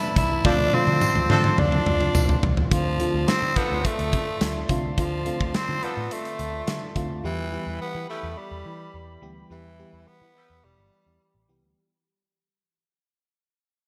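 A raspy, gritty tenor saxophone with digital delay leads from the start over glassy, chorused FM electric piano and dark background brass chords in this nostalgic, dramatic 1980s-style pop excerpt in D dorian at 106 BPM. At 0.2 s it is joined by round, foam-muted picked bass and a punchy, big-room rock drum kit whose fill and band accent run from 0.5 to 2.7 s alongside distant horn stabs and a brief jingly tambourine. From 2.7 s the piece fades out under a lush hall reverb and bright digital production, with the drums stopping at 7.1 s.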